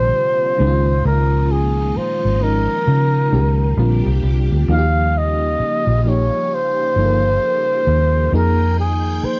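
A breathy, whispered flugelhorn carries the melody up front with mellow vibrato and a soft attack in this sultry, introspective R&B excerpt, moving at 66 BPM with a swung sixteenth-note feel over chords such as Bbadd9, Eb9 and Fm9. A round, punchy, foam-muted electric bass sits prominently beneath a full-bodied FM electric piano with tremolo and a dark tape tint, while a swirling sawtooth string machine with ensemble chorus and phaser holds slow-attack chords far back in the mix. The whole excerpt has the intimate feel of a home cassette recording in a small room, its top end rolled off above 7.5 kHz.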